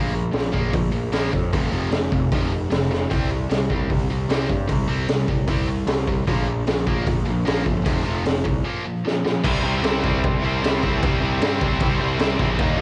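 A tight, double-tracked distorted guitar riff and a growly fuzz-picked electric bass open this upbeat, energetic punk rock excerpt, joined a moment later by a raw garage drum kit with a boomy kick and high-tuned snare, with fills at 2.9 seconds and just before a scooped high-gain guitar bursts in at 9.4 seconds, all captured dry and gritty on a home cassette recording with a rolled-off top.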